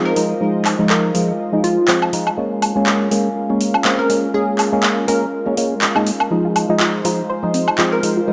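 Deep house at 122 BPM in F minor, this hypnotic, deep passage, cut from a longer piece, rides a shuffled 4/4 groove. Up front, an overdriven electronic drum kit lays handclaps, metallic hi-hats and woodblock beside a hollow, organ-like stab that decays quickly through chorus, phaser and tape echo, with a filter sweep running across it. Behind them, a smooth sawtooth pad holds sustained chords and a warbling, nostalgic lo-fi pad adds dark texture with a long release and its own reverb. A glassy, crystalline wavetable pluck carries a melody through dub echo, and at 6.4 s a soft, round pluck slips in with gentle arpeggios in the background. The harmony moves from Fm7 to Bbm7 at 2.4 s and back to Fm7, all set in a dark, warm production with a moderate echo-chamber reverb.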